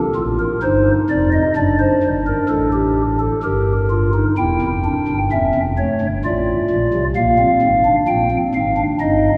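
Moving in a straight three-beat metre, this short classical fragment, cut from a longer piece, is a baroque-style four-part fugue with a serious, driving character. The sole instrument is a pipe organ on a stopped flute registration, with a soft, hollow, mellow tone and a chiff at the start of each note. Its baroque voicing spans from the deep pedal register up into the treble, and the organ sits up front even as a long cathedral reverb of about five seconds washes around it. After a brief unharmonised opening, the harmony settles on C minor over G and passes through D7 over F sharp to G minor, then turns at 4.4 seconds to A7 over E, D minor over A and finally B flat 7 before the cut at 9.4 seconds.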